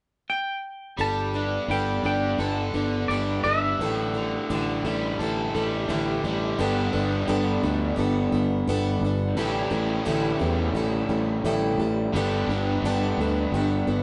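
A straight, steady 4/4 pulse carries this hopeful rock excerpt, cut from a longer piece. A twangy, clean electric guitar takes the melody from 0.3 seconds, its scooped, fingered tone riding high before it stops at 6.2 seconds. From 1.0 seconds the full band plays: a shimmering, octave-doubled twelve-string acoustic guitar with a full-bodied jumbo sound provides picked accompaniment, a biting, double-tracked overdriven guitar drives the riff, and a growly, punchy fingered electric bass holds the low end. After an unaccompanied opening, the harmony alternates between Gadd9 and A7sus4 from 1.0 seconds onward. Every part sits up front in a warm mix that sounds like a band playing live in one room, with moderate studio reverb and a softened top end.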